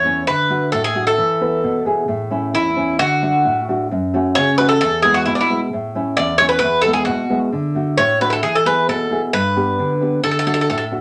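From the very start, a Greek bouzouki and a nylon-string guitar play together in a joyful, bright Greek folk tune for a bouzouki band, moving at 132 BPM in a straight 2/4 in A major, tuned to A4 = 442 Hz. The bouzouki carries the melody between D4 and D5, its picked double strings sounding mellow yet metallic, with some strings doubled at the octave. Beneath it, the nylon-string guitar accompanies from E2 up to B4 with a dark, woody, full-bodied tone from old strings, thumb-plucked in a deep classical manner. Both instruments sit up front in a wet studio ambience. After an opening statement, a longer middle section from 2.1 seconds moves through A, D, F#m and E before the opening material returns at 9.3 seconds over G and D. Cut from a longer piece, it closes as the bouzouki drops out at 10.8 seconds and the guitar carries on briefly to the end.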